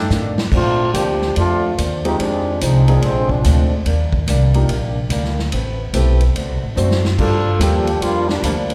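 A drum fill on a swinging big-band kit with a punchy kick opens this energetic big band swing piece at 144 BPM in Bb major, alongside woody pizzicato upright bass, polished grand piano and a boxy, picked ladder-braced acoustic guitar, before a bright, up-front trombone section with light vibrato takes the solo from 0.5 seconds, drops out at 3.7 seconds and returns at 7.2 seconds after a second fill, the ensemble ringing in a reverberant concert-hall space.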